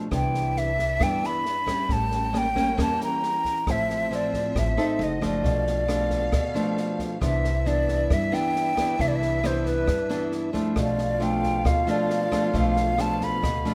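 A fingerpicked nylon-string guitar opens this romantic, relaxed bossa nova, its small, warm tone sitting up front, and almost at once a silver concert flute takes the melody with a hollow, breathy, close-miked sound shaped by tongued notes and vibrato. Beneath it, a pizzicato upright bass with steel strings gives a woody low end, while an open jazz drum kit in a studio room adds a boomy kick, a high-tuned snare and rim clicks to a straight 4/4 feel. A lush bowed string section hovers in the background, its ensemble chords colored by expressive vibrato and portamento. At 7.2 seconds a soft-attack trombone enters as a second line, distant and roomy, with a whispered, intimate quality and light vibrato. The harmony moves through rich jazz chords such as Cmaj9, A7b9 and Dm9/A, all under a light reverb, in a passage cut from a longer piece.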